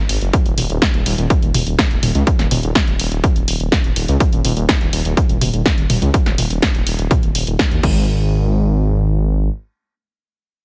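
A deep, rumbling detuned saw bass opens this dark, driving melodic techno excerpt, its saturated sawtooth tone beating and pumping under sidechain compression. An overdriven, heavy electronic kick and a layered techno kit of punchy snare, hi-hat, toms and crash follow almost at once, both up front and touched with studio reverb, until the drums stop at 7.9 seconds and the bass carries on alone to 9.5 seconds. The mix has little reverb overall and is squeezed into a heavily compressed radio sound.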